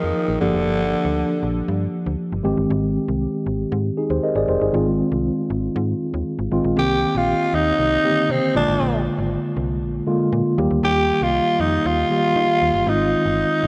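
1980s-style pop in Eb major at 118 BPM, romantic and glossy, where a mellow tine electric piano plays throughout over a snappy, metallic slap-like FM bass while a breathy, raspy growling tenor saxophone with light vibrato and tape echo carries the melody at 0.0-1.9 s and returns at 6.8 s, all bathed in lush hall reverb with a cassette home-recording character, in a short cut from a longer piece.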